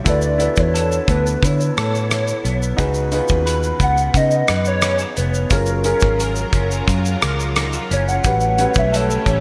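Polished in a bright 1980s-style digital production with a moderate hall reverb, this sunny, nostalgic bedroom-pop excerpt at 88 BPM in F# major features a warbling, detuned synth lead soloing throughout with chorus and digital delay over a woody upright piano with cassette-tape character, a dark, slightly broken-up electric guitar through a small old amp with chorus and vibrato, a round, foam-muted fingered electric bass, and a damped 70s drum kit with a tight kick, hi-hat, rim click and shaker with gated reverb, while a string machine with a slow attack and ensemble chorus joins in the background at 5.5 s.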